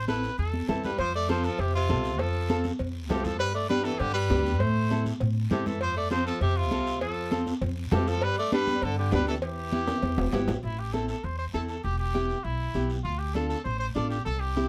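A clear, lightly vibrato-tinged trumpet carries the melody up front in this driving, fiery cumbia excerpt, with a woody pizzicato upright bass and a fingerpicked nylon-string guitar, finger squeaks and all, beneath it. A bright tenor saxophone adds a second line from 0.7 to 10.4 seconds, while ringing, high-tuned congas played with soft hands, a raspy guiro, and metal-shelled cowbell and timbales (heard until 10.5 seconds) fill out the percussion, with short drum fills marking the turns into each section. The sound is close and detailed with little reverb.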